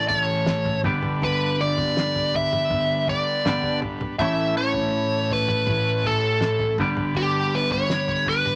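Psychedelic rock at 81 BPM in a straight 4/4, this short cut from a longer piece feels hypnotic and kaleidoscopic as it rocks between A and G chords. Up front, a biting lead guitar carries the melody with overdrive and wah, its picked tone warm and gritty. Beneath it, a twelve-string electric guitar plays a bright, twangy riff through a phaser, clean and compressed, while a combo organ holds reedy, vintage-sounding chords with a light vibrato. A fuzzy, overdriven fingered bass sits round and dark in the background, dropping out at 7.9 seconds. The cloth-damped drum kit enters at 0.1 seconds with thuddy toms, a fat snare and a tight kick, its dry, rolled-off sound set in a moderate small room.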